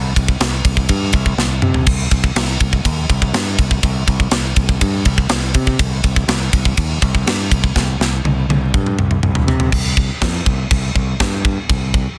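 Heavy metal in a relentless, aggressive mood, cut from a longer piece, built on a growling fingered electric bass with a bright, overdriven edge and a tight metal drum kit with polished, bright cymbals, a medium-tuned snare and a tight kick. The bass opens alone before the drums join at 0.2 seconds, with crash, ride, snare and toms in play and drum fills around 1.4 seconds and again from 7.8 to 9.7 seconds, leading into a new section. The sound is dry and dense, with both parts up front in a heavily limited modern master.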